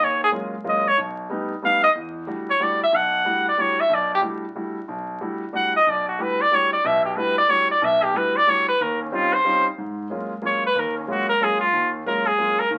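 A trumpet and a concert grand piano begin together, opening this intense, spiritual jazz excerpt in 3/4 at 184 BPM with swung eighths, in E dorian and tuned to A4 = 441 Hz. The trumpet carries the melody as a forceful, punchy solo, sitting up front with light vibrato and scooped notes that give it a vintage jazz edge. Beneath it the piano accompanies with an intimate, polished sound, deep in the bass, with long sustain and the audible noise of its action. The harmony shifts from G#13sus4 through Baug7 to a long stretch on Em11 starting at 1.9 seconds, then moves through D#13 and back to G#13sus4 at 9.8 seconds, where the trumpet begins a fresh solo passage. A moderate club reverb surrounds the pair, and the whole take carries the crackle of a very old 78 rpm record before it is cut off at 12.8 seconds.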